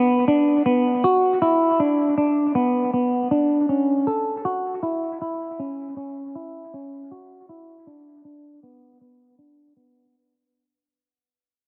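Ethereal and haunting, this brief dream pop fragment is cut from a longer piece and rests on a single semi-hollow electric guitar, heard alone from 0.0 to 10.1 seconds. The fingered tone is clean and warm with a hollow-body character, sitting up front while staying within a modest range from B3 to A4 over a straight 4/4 feel. A subtle chorus, a low-pass filter and dub echo colour the guitar, and a filter sweep runs across its whole length. The echo-heavy mix is bathed in a wet plate reverb with a long 2.4-second tail, and the sound is rolled off above 10.5 kHz, giving it a softened sheen. Throughout its ten seconds the guitar fades out, adding to the feeling of something slipping away.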